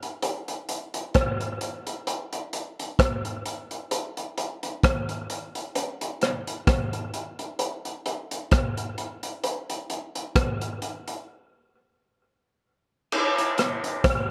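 Soaked in a wet spring reverb, this short reggae cut has a laid-back, hazy mood and a gently swung sixteenth-note feel. A crunchy breakbeat drum kit sits up front, sounding saturated and gritty with a rolled-off top, its punchy kick, dark cymbals, hi-hat and rim clicks carrying the whole groove. A break arrives at 11.3 seconds before a brief new section begins at 13.1 seconds.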